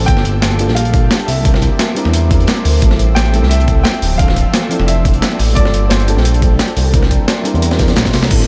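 A small, lightly reverberant room gives this melancholic, rolling liquid drum and bass clip a close, compact sound, cut from a longer piece and set at full drop energy from the start. An up-front, smooth gliding synth bass with sawtooth and square-wave tones and portamento anchors the low end beneath a thumpy, overdriven electronic kick. Two breakbeat kits share the groove: a gritty, compressed sampler-style kit with crash, hi-hat and snare, overdriven and re-recorded in a small room, and a crunchy, saturated kit with a rolled-off top sitting in the background, its hats, snare and room high-pass filtered. A soft, round, warbling FM electric piano with a vintage noise layer, chorus and diffuse ambient delay plays the accompaniment, while a glassy, ethereal FM pad holds sustained chords in the background with ensemble chorus, built-in reverb and sidechain pumping. A dark, mellow baby grand piano carries the melody with delay until 7.2 seconds, over a cycle of Gm9, C9, Am7 and Dm9, and a drum fill arrives at 8.1 seconds.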